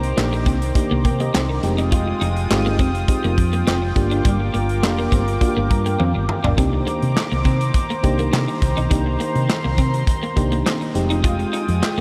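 The fingered hollow-body electric bass, dark and round through its amp, anchors this funky, late-night slice of early-eighties boogie funk at 103 BPM in C minor, cut from a longer piece. Up front, an acoustic drum kit with a tight kick and medium-tuned snare sets a straight 4/4 groove with hi-hat, handclaps and toms, joined by an FM electric piano whose mellow, fast-attack tones carry a faint noise layer. A chorused pulse-width pad sustains shimmering, detuned retro chords underneath, while an electric guitar at the edge of break-up sits in the background with a compressed, picked riff under ensemble chorus. The harmony moves through Cm9, Fm9 and Gm7, and near the end of the opening section the electric piano plays a fill from 5.4 seconds, with the drums adding their own fill at 6.0 seconds before the second section begins at 6.6 seconds. A huge ambient reverb soaks the mix, giving the whole groove a dreamy, nocturnal haze.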